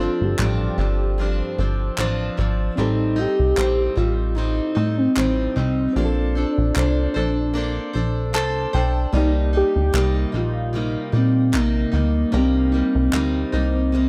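A punchy, dark analog bass sits up front with a plucky, funky sawtooth bite, anchoring this hazy, mellow bedroom-pop excerpt with a gentle swing. Above it a velvety synth lead carries the melody with smooth sustained tone, subtle chorus, vibrato and dub echo, while a picked plugged-in steel-string acoustic guitar adds finger squeak and a warbly pitch drift. In the background a clean, reedy electric piano shimmers with fast tremolo and cassette-tape colour, stepping out for a fill at 8.0 seconds, crisp group handclaps enter at 0.4 seconds, and the echo-heavy small-room mix drifts through chords from G7sus4 to Cm7.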